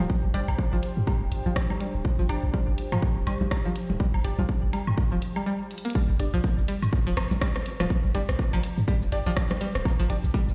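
Sparse and hypnotic, this cut from a longer minimal techno piece runs at 123 BPM in 4/4 with a 58% swing on the sixteenths, tuned to A4 = 445 Hz around a G5 chord. An overdriven, punchy electronic kick sits up front alongside a deep sine sub bass with a pitch-drop attack, the bass pumping under sidechain, while an overdriven house kit of hi-hat, rim click and shaker and a set of electronic congas, woodblock and rim click with digital delay fill in the groove. A twangy, string-like resonator pluck carries the riff with a filter sweep, chorus, delay and pumping, and a muted, detuned dub chord stab with subtle chorus and digital delay adds short filtered hits. A warbling, nostalgic, lo-fi pad with phaser, chorus and its own reverb lingers only until 5.5 seconds, when a brief break and a drum fill at 5.7 seconds lead into the drop at 6.0 seconds. The drums and percussion sound re-recorded in a large room, and the whole track carries the bare, stony reverb of a big sound system playing in an empty space.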